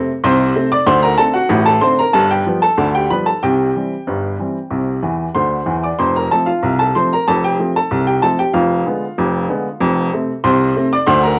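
Cheerful and playful, this short cut from a longer ragtime piece features a solo upright piano at 94 BPM in 2/4 with a straight feel, in F major. The woody, polished piano sits present and up front across a range from F1 to D6, moving through D7, G7 and C before returning to F, with a brief fill from 5.0 to 6.0 seconds and an Fdim7 colour at 8.5 seconds. Light reverb and the worn, warbling pitch drift of old cassette tape give the sound an aged character.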